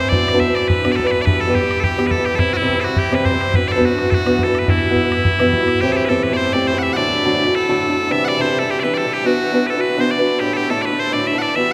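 This is a Celtic folk reel in E minor, cut from a longer piece, driving along at 210 BPM in 4/4 with a light swing on the eighth notes that gives it a dark yet lively energy. Loud, bright bagpipes carry the melody up front, their piercing, continuous tone cutting through the mix. Close beside them, a fingerpicked acoustic guitar plays a swing-style accompaniment with a boxy body, moving through chords such as Bm, Em, C, Am7 and Dsus2. A mellow accordion holds a drone in the background, its reedy, round single-reed voice sitting quietly beneath the other parts. A bodhran adds open, boomy percussion, recorded close and dry, from 0.1 s until it drops out at 5.7 s, leaving pipes, guitar and accordion to carry the second half. The whole performance sits in a cathedral-like space whose long, wet reverb, lasting 5.2 s, lends the tune a grand, echoing atmosphere.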